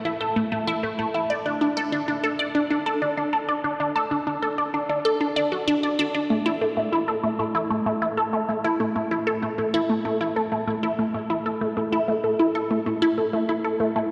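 Ambient in an expansive, cosmic mood, this short excerpt cut from a longer piece moves in a straight 4/4 pulse. A single resonant blip pluck carries everything on its own for the full 14.1 seconds, ranging from A3 to D5. Its sound is juicy and squelchy, built from sawtooth and triangle tones with a noise layer and a sub octave beneath, shaped by a filter pluck with a fast attack, short decay and a moving notch. Sitting bright and up front, the pluck passes through phaser, cassette tape colouring and tape echo. The mix is dreamy and soaked in a cathedral reverb with a 5.2-second tail, and the music shifts into a new section at 6.3 seconds.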